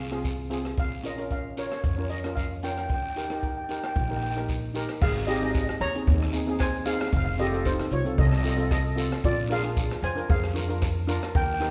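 A lightly swung 4/4 calypso groove carries this sunny, carefree fragment, as woody pizzicato upright bass and a smooth, dark jazz kit with boomy kick, hi-hat, rim click and crash support a boxy, up-front steel pan accompaniment and a raspy guiro, while a close-miked, dry steel pan melody with a shimmering metallic ring enters at 0.8 s, the whole performance set inside a wet recital-hall reverb.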